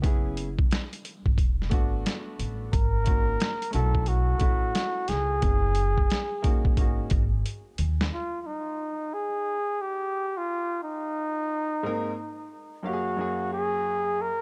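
A clear, worn grand piano opens this relaxed, smooth jazz-hop groove over a woody, pizzicato upright bass and a gritty, compressed boom bap kit whose thumpy kick and medium-tuned snare sit up front, with a swung feel and suspended ninth chords. At 2.7 seconds a mellow, breathy flugelhorn solo enters up front with light vibrato and analog delay. After a drum fill, bass and drums drop out at 8.1 seconds for a break, leaving the horn to carry on alone until the piano returns at 11.8 seconds, all within a dark, warm small-room production.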